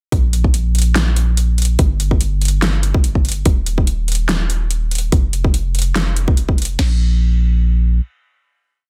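A playful, lush future bass piece opens straight into a drop at 144 BPM in a swung half-time 4/4. A trap kit brings a hard-clipped kick, a sharp snare and crash, while a layered, overdriven big-room kit adds a huge snare and metallic closed-hat rolls, both kits up front with studio reverb. Alongside them a deep, boomy sine 808 bass with a noise layer pumps under sidechain as it follows the chord rhythm between Eb1 and Bb1. The drums fall away by 6.9 seconds, and the bass rings on into the final note until 8.0 seconds in a dense, heavily limited, fairly dry mix.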